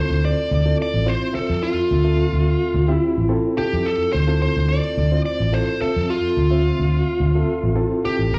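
Straight-eighth soul blues in D minor at 108 BPM, mournful and soulful, sitting on a single Dm7 chord in this short cut from a longer live club performance heard through the venue's PA with club reverb. A smooth, overdriven lead guitar carries the melody up front with a dark, picked tone, while a reedy, clean electric piano with tremolo and slapback echo fills in the accompaniment. Underneath, a vintage foam-muted fingered bass, round and amped, holds the low end from 0.1 seconds.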